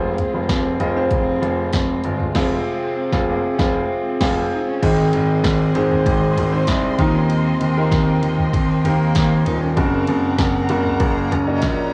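This is a piece of piano-driven pop in Ab major at 97 BPM in a straight 4/4, warm and anthemic in mood, heard as a short cut from a longer piece. A bright, woody upright piano carries the accompaniment up front, with audible action noise, a long sustain and a cassette-tape grain. Beneath it, a concert grand piano supplies deep, open bass lines, while an electronic deep house drum kit, layered and re-recorded in a small room, enters at 0.2 s with a deep kick, punchy snare, hi-hat, ride, crash and toms. A single bowed cello plays the melody with a soft attack in the background, sul tasto with light vibrato and an intimate closeness, colored by cassette tape and analog delay. A dark, lush studio string section holds sustained chords behind it, expressive with a smooth top and the same tape character. The harmony moves from Fm to Ab, Eb6 and Gb. The band accents the stretch from 2.4 s before the music shifts into a new section at 4.8 s, all within a modest booth ambience that suggests a home recording.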